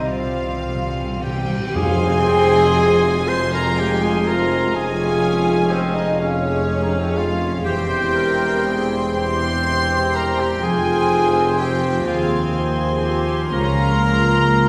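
The rhythm moves in a slow, elastic 6/8 at 41 dotted-quarter beats per minute, with uneven beats and rubato giving this solemn, yearning F minor orchestral movement, cut from a longer piece, a breathing, romantic pulse. It opens with a timpani fill played with medium mallets, close and dry, before a full-band accent at 1.8 seconds brings in the trombone section, tuba and a very quiet tam-tam, the tam-tam sounding until 5.7 seconds. A violin section sings the melody sul tasto with light vibrato in an intimate, close sound, while a second violin section floats alongside it, joined by a clear clarinet and a distant, hollow silver flute on second lines. Underneath, a rich viola section provides accompaniment, a quiet harp rings out fingerpicked arpeggios, and mellow French horns and bright, tight trombones hold sustained chords. The bass is built from a dark, woody double bass section, a warm cello section and a mellow tuba, moving through Fm, Dbmaj7/F, C/E and back to Fm before closing on Bbm/Db. 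A wet recital hall reverb surrounds the ensemble, lending the slow harmonies a spacious, reverent glow.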